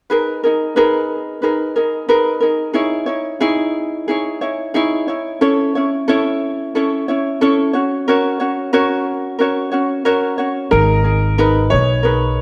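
A lightly swung 90 BPM pulse in 4/4 carries this tender, reflective acoustic pop excerpt in G# minor, where an up-front, fingerpicked ukulele plays the accompaniment alone from 0.1 seconds through chords of G#madd9, C#madd9, A and F#. At 10.7 seconds, as the harmony returns to G#madd9, a clear upright piano enters with a short melody and a pizzicato upright bass adds a woody, steel-string low end. A moderate recital-hall reverb lends the brief passage a sense of space.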